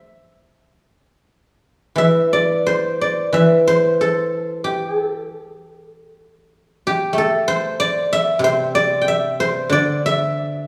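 Unfolding in a free, rubato 4/4 that drifts between 78 and 98 BPM, this short cut from a longer Chinese traditional piece features a solo guzheng in the E jue mode, its mood longing and contemplative. Played with fingerpicks and set up front, the acoustic zither sounds silvery and ringing across a range from C3 to G5, filling the whole 10.7 seconds alone. A moderate concert hall reverb with a 1.7-second decay blends with a small room ambience, and the music moves into a new section at 2.0 seconds.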